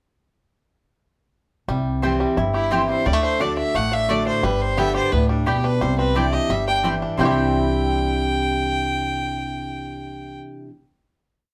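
A lively small-room recording of a bluegrass band playing live, this short, virtuosic piece in C major races along at 175 BPM with a clear, lightly vibrato fiddle up front running eighth-note melody over a full-bodied picked dreadnought guitar alternating bass and strum with bass runs, twangy three-finger banjo rolls, woody mandolin chops on the off-beats and a thumpy pizzicato upright bass playing a two-beat root and fifth, moving through C, D and G before settling on a final Cadd9 chord at 7.2 seconds.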